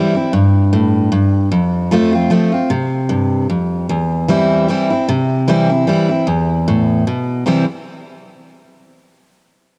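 A home cassette recording with light reverb and the ambience of a small room gives this short bluegrass fragment, cut from a longer piece, an intimate, homespun sound. A lone picked steel-string acoustic guitar with a full-bodied dreadnought tone sits up front, colored by the soft grain of cassette tape as it plays from the start until 7.7 seconds. The mood is joyful and virtuosic, moving at a brisk 151 BPM in 3/4 time with a light swing on the eighth notes. In C major, the guitar ranges from E2 up to F4, moving from C to F and on to C over E. A suspended E chord at 6.3 seconds adds tension before the harmony settles back on C.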